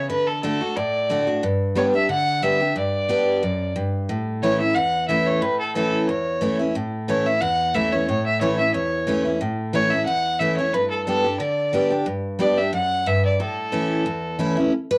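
Bluegrass at a lively 181 BPM with a joyful swing, this home cassette recording cut from a longer piece features a single rich, earthy bowed fiddle carrying the melody in A mixolydian over a bright, full-bodied picked steel-string acoustic guitar moving through D, G and A, both up front in a wet small room, with the guitar carrying on alone from 14.4 seconds to 15.0 seconds.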